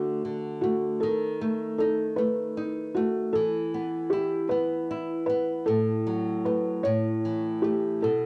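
Swaying gently in 6/8 at 52 beats per minute, counted in dotted quarters with a straight feel, this brief lullaby fragment from a longer children's piece sounds innocent and tender. A felt-muted upright piano carries the melody in a narrow middle range, its tone soft, mellow and dark, with thick felt dulling each note and the action noise clearly audible, giving it an intimate, close feel that is coloured further by cassette tape. Beneath it, a fingerpicked nylon-string guitar plays the accompaniment, sounding small and acoustic yet sitting up front, with a warm body reaching down into its lower register. Both parts play together from start to finish across about 8.3 seconds, moving through D, B7/D#, E5 and F#madd11/A before settling on A. The home cassette recording sits in a moderate studio reverb, and the instruments are tuned slightly high to A4 = 441 Hz.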